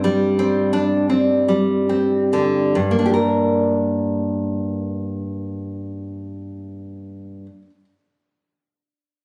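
A nylon-string guitar, fingerpicked and up front, carries this short romantic solo in G minor, its bright, full-bodied tone ranging from G2 to Bb4 with audible finger squeak. The melancholic, passionate playing moves in a rubato 3/4 at roughly 45-60 BPM, slowing through the opening Gsus4 before settling onto G minor at 2.8 seconds. Captured on a phone in a room with light club reverb, this brief fragment is cut from a longer piece.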